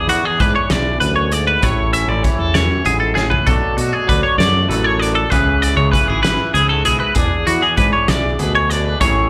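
Math rock and midwest emo in a wistful, playful 6/8 at 65 BPM, cut from a longer live gig heard through the venue's PA with club reverb, moving from E7 through Amaj7, Bm7 and C#m7 before returning to E7. An up-front, bright twelve-string electric guitar spins clean, picked arpeggios with warbly pitch drift and slapback echo, over a warm, fingered twangy electric guitar accompaniment wrapped in lush chorus and its own slapback echo. A growly, direct fingered bass sits forward as a loose indie kit with a fat snare, punchy kick and pumping room sound drives the groove, marked by a drum fill at 3.2 seconds.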